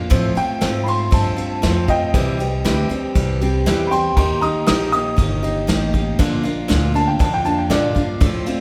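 Nostalgic and sunny, this short honky-tonk and classic country passage in a straight 4/4 places a woody, boxy upright piano high in its range as the soloing voice over a bright, up-front picked dreadnought acoustic guitar, a growly, thumpy pizzicato upright bass and a distant, roomy brush drum kit with a punchy kick, heard in the generous reverb of a recital hall.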